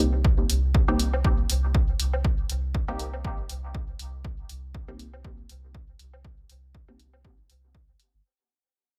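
A swung 120 BPM 4/4 groove in C minor drives this nocturnal, deep dub techno excerpt, with a punchy, tape-warm analog kick entering at 0.2 s beside a layered electronic hi-hat, both up front with a small-room character. A round, soft sub bass pumps under the beat while muted, detuned sawtooth chord stabs on Cm7 pluck through phaser and dub echo beneath a filter sweep. An overdriven electronic woodblock enters at 0.9 s with its own echo, all set in a digital ambience as the passage fades out across its 8.2 seconds.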